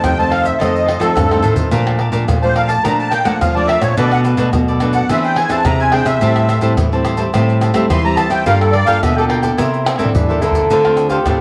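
A reedy, shimmering musette accordion carries the melody up front in this festive, joyful samba and choro excerpt, over a fingerpicked classical nylon-string guitar with a cassette-tape tint, a full-bodied nylon-string bass line with audible finger squeak, a crisp picked cavaquinho that is also tape-coloured, and a live-room percussion bed of egg shaker, tight surdo, pandeiro, tamborim and agogo bells played with soft hands and punctuated by brief drum fills, until a breathy, jazz-style trombone with vibrato and scooped notes enters on a second line at 9.9 s, the whole home cassette recording sitting in moderate spring reverb and small-room ambience.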